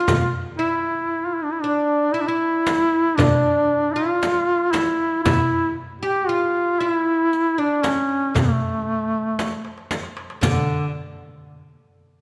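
Soulful and melancholic, this Arabic maqam ensemble excerpt moves at 116 BPM in 10/8, with an up-front duduk carrying the melody in a folk style rich with vibrato and scooped notes, a woody, plectrum-plucked fretless oud with double strings as a second line, and a clay-shelled darbuka, a saturated, compressed frame drum played with hard hands and a close, dry riq with dark jingles supplying the percussion, which includes a drum fill from 9.4 to 10.4 seconds, inside a moderate concert hall reverb.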